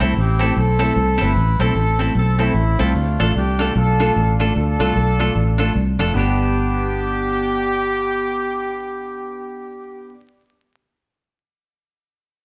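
Swung eighth notes drive this upbeat, joyful ska in 4/4, with a round, dark fingered electric bass up front beneath a punchy, tight horn section that carries the melody with light vibrato. A bright, twangy clean electric guitar plays accompaniment while a woody upright piano with tube saturation adds stabs from the background, its action noise audible, as the harmony moves from Am to Dm before settling on G at 6.2 seconds. The band sounds live in one large studio room with moderate reverb and a layer of vinyl crackle, giving this excerpt a vintage feel.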